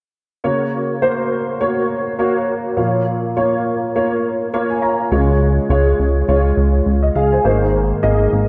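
A polished, up-front grand piano provides the accompaniment in this dramatic, bittersweet piano-driven pop excerpt at 103 BPM in 4/4, with a touch of 16th-note swing and tuning at A4 = 441 Hz. Under an ensemble chorus, the piano moves through Gb, Bbm, Db and Abadd9 and adds a fill at 4.2 s. At 5.1 s a glossy, retro synth bass enters, its saturated pulse and sawtooth tones shaped by pulse-width modulation, a filter sweep and chorus, while a plate reverb soaks the mix in a dreamy wash.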